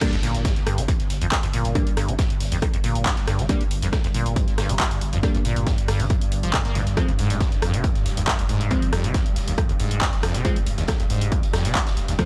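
A digital ambience frames this relentless, driving slice of peak-time techno, cut from a longer piece and sitting entirely in a drop at 138 BPM in G phrygian, moving from Gm to Fm at 7.0 s. An overdriven, heavy electronic kick sits up front, layered with an overdriven techno kit of crash, handclaps, hi-hat and rim click in small room ambience, its hats and cymbals pumping against the sidechain, while a very quiet, distant soft-mallet kit adds hi-hat and a medium-tuned snare from a roomy studio. Underneath, a thick, saturated triangle sub bass holds between F1 and G1 through a low-pass filter, and a squelchy, resonant sawtooth acid riff ranging from Eb2 to Bb3 carries a filter sweep, lush chorus and tape echo. In the background, a crisp, warbling wavetable chord stab with a detuned unison, filter pluck and moving notch punctuates the groove through tape echo. An electronic impact marks the opening until 1.8 s, and from 1.7 s a swarming, tense drone on G2 grows in, its ring-modulated, granular texture evolving under built-in reverb.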